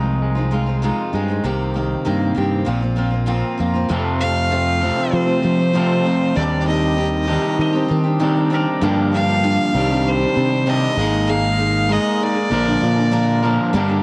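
Picked, bright steel-string acoustic guitar, a twangy, slightly broken-up electric guitar riff with spring reverb, and a round, punchy fingered electric bass open this dusty, reflective folk and heartland rock excerpt at 98 BPM in straight 4/4, caught on a home cassette recording with moderate booth ambience, before a very quiet, reedy harmonium breathes in sustained chords at 3.9 seconds, a clear, earthy fiddle with light vibrato carries the melody up front from 4.2 seconds, and a double-strung mandolin adds a brief second line at 7.6 seconds.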